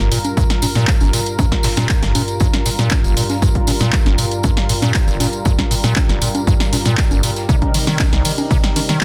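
Trippy and gritty, this acid house excerpt in G minor runs at 118 BPM in straight 4/4, moving from Gm7 to Cm7 at 7.5 seconds. A squelchy, hollow square-wave acid bass riff with resonant filter sweeps, tube saturation and tape echo pumps against a smooth, nasal sawtooth pad of detuned sustained chords with chorus, both ducking to the sidechain. A punchy, tape-warm analog drum machine sits up front with congas, handclaps, hi-hat, ride and snare, joined by a very quiet, compressed sampler-style breakbeat kit, a jingly tambourine in the background and an electronic kick that enters at 0.4 seconds, all in a dense, heavily limited modern master with digital ambience.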